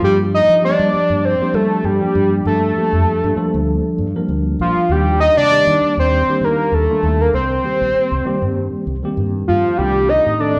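A lightly swung 16th-note groove at 98 BPM in 4/4 drives this slick, intense electric jazz fusion excerpt in C dorian, cut from a longer piece and tuned slightly low at A4 = 439 Hz. A fat analog lead carries the melody between F4 and Eb5, its detuned sawtooth and square-wave tone thickened by a sub octave, with a fast attack, sustained notes, vibrato and a mellow, up-front presence. Beneath it, a worn tine electric piano, clean but slightly out of tune and heard through its built-in speakers, provides accompaniment from Eb3 to Bb4 at a lower level. A round, punchy fretless electric bass with a dark, direct, amped sound anchors the bottom between Bb1 and G3. All three parts play throughout the 10.6 seconds as a band live in one room, bathed in a wet large studio reverb, while the harmony moves from Gm7 through Ebmaj9 and Cm7 to a closing Cm69 at 9.8 seconds.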